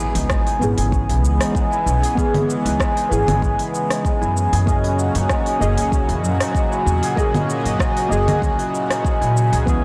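A lightly swung 4/4 groove from a deep house kit of congas, smooth hi-hat, rim click and shaker, together with a woody pizzicato upright bass, arrives at 0.2 s and is joined at 0.3 s by a layered deep electronic kick, carrying this meditative, hypnotic organic downtempo piece over a C#m7 to F# change. A hammered, shimmering santur plays arpeggios through tape echo above a detuned sawtooth analog pad and a dark, warbling vintage chord stab, both pumping under sidechain with chorus, while a background electronic impact sounds until 2.2 s and a glassy texture of drifting overtones surfaces only at 9.7 s. The recording is blown-out and overdriven, set in a lush hall reverb.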